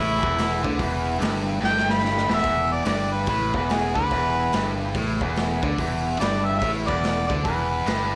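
Blues rock and southern rock power trio excerpt at a swung 144 BPM in E mixolydian, gritty and raunchy, where an up-front, warm, overdriven harmonica solos through the opening 2.5 seconds with light vibrato, scooped notes and tongue slaps over a biting, double-tracked guitar riff, a bright, growly fingered bass, a raw, saturated garage drum kit entering at 0.2 seconds with a punchy kick and a fill from 1.6 seconds, and a very quiet, thick tonewheel organ holding chords through a slow rotary speaker, all set in a moderate echo-chamber reverb.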